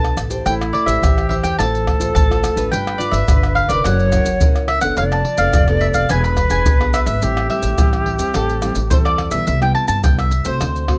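This lively, playful samba-choro passage, cut from a longer piece, opens with mandolin, nylon-string guitar, upright bass and a percussion group of maracas, pandeiro, tamborim and surdo sounding together, in A minor at 106 BPM in a straight 4/4. The picked mandolin carries the melody with a mellow, woody double-string tone, while the classical guitar is fingerpicked beneath it, its finger squeaks audible. The pizzicato upright bass, strung with steel, gives a warm low end, and the percussion sits up front, close and dry, with soft hands and a tight surdo. A breathy silver concert flute enters at 0.5 seconds as a second line, close-miked with vibrato and a crisp attack, and drops out at 9.4 seconds. The harmony moves from Am7 through G7, F#7 and E7 back to Am7, then shifts to Cmaj7 at 9.5 seconds as a new section begins, all within a light reverb.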